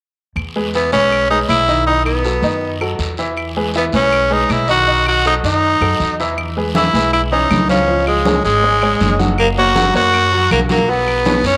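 This joyful, danceable salsa in E major runs at 160 BPM in a straight 4/4, opening at 0.4 s with a dark, growly pizzicato upright bass on steel strings alongside woody claves and a raspy guiro in the background. A bright baby grand piano follows as accompaniment, its brilliant, worn, intimate tone carrying audible action noise and a short sustain. Up front, a growling tenor saxophone takes the solo melody with an edgy, gritty pop-style voice and vibrato. At 6.4 s a new section opens on E6, and the harmony moves through C#, F# and Bsus2 as distant, ringing congas played with soft hands join from a large room. A wet spring reverb with small room ambience colours the mix, and the passage is cut from a longer piece.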